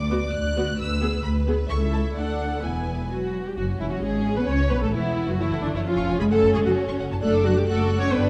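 A focused, up-front double bass section anchors this spirited, quick classical-period string orchestra movement in A major at 132 BPM in 2/4, with dark, woody cellos above it, close, rich violas filling the accompaniment from 0.1 s, a lush second violin line and a smooth first violin melody reaching as high as F#6, all bowed with vibrato in a wet concert hall reverb, in a passage cut from a longer piece.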